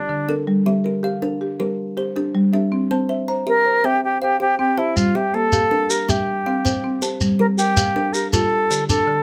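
The rhythm rolls in a straight 12/8 at 107 beats per minute, counted in dotted quarters, as an interlocking cycle in the southern African mbira style, hypnotic and trance-like in G dorian. A buzzing marimba struck with medium mallets spins arpeggios across its hardwood bars, its tone dry, close and full, while a kalimba adds short, plucked arpeggios with a bright thumbnail snap from its solid board. Alongside them, an up-front silver concert flute carries the melody in a pure, reedy voice with vibrato and a soft attack. At 5.0 seconds a grainy, mellow shekere joins close at hand, sounding as if in a live room. The harmony circles between Gm and C before turning to Dm near the end, all set in a small room with moderate reverb, in a passage cut from a longer piece.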